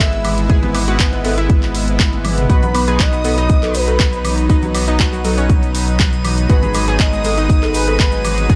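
A dry, tightly produced mix frames this euphoric, uplifting progressive house excerpt at 120 BPM in B major. An up-front, deep electronic kick and a deep house kit of handclaps, dark hi-hats and toms (with a drum fill at 2.1 s) drive the groove, while a thick, saturated sub bass pumps beneath. A soft, round octave-layered synth lead carries the melody with vibrato, chorus, phaser and delay, and a lush symphonic violin section plays a second line above it. Around them, a glossy, retro chorused polysynth hits stabs over a bright supersaw pad, a warbling analog pluck arpeggiates in the background, and overdriven congas, woodblock and cowbell add colour. A grainy egg shaker joins at 2.5 s and a glassy, drifting glass-harmonics texture arrives at 3.8 s, as the chords move from E/G# to B and then G#m7.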